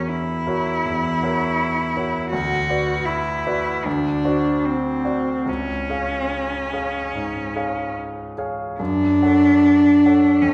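A bowed cello sings a smooth, clear melody with light vibrato over a bright grand piano, whose action noise is audible, in this solemn, yearning fragment of a romantic classical duo, moving in a rubato 4/4 at 70-84 BPM through chords from F#7/E to F#m, heard from further back in a wet recital hall.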